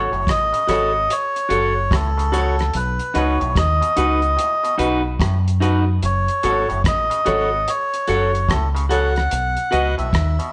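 A reedy, breathy melodica leads up front over a round, punchy dub bass, clean picked electric guitar, a woody, slightly detuned upright piano stabbing in the background, twangy clav arpeggios through a combo amp and a cloth-damped, thuddy drum kit with hi-hat, tight kick and rim click, in a serious, laid-back roots reggae excerpt at 73 BPM with swung sixteenths in F# dorian, moving between F#m and B in a stone room with a cassette-tape character.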